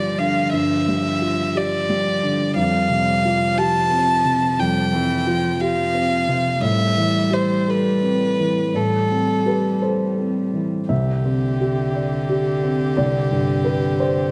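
A felt-muted upright piano sits up front in this tender, hopeful neoclassical piece, its thick felt giving a soft, mellow accompaniment that spans deep bass to the middle register. Over it a single violin carries the melody, close and intimate, with light vibrato, an airy sul tasto bow and a gentle attack. A lone cello plays a second line beneath, sharing the violin's bowing style. The music moves in 6/8 with a free, rubato feel, and at 10.9 s it shifts into a new section. A moderate concert hall reverb surrounds the trio, and the top end is rolled off above 10.9 kHz, lending a warm cast to this excerpt cut from a longer piece.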